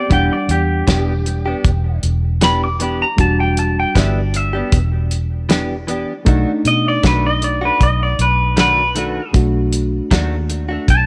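Brooding and mournful, this straight-eighth soul blues cut from a longer piece moves at 78 BPM in E minor, shifting from Em7 to B7#9 at 6.3 seconds, as a bright, twangy clean electric guitar carries the melody up front over a reedy, worn, slightly out-of-tune electric piano, a second direct-recorded clean guitar adding compressed, scooped stabs bathed in lush chorus and analog delay, a dark, round, foam-muted fingered bass, and a cloth-damped, thuddy small-room drum kit with a fat snare, tight kick and hi-hat, all set in studio reverb.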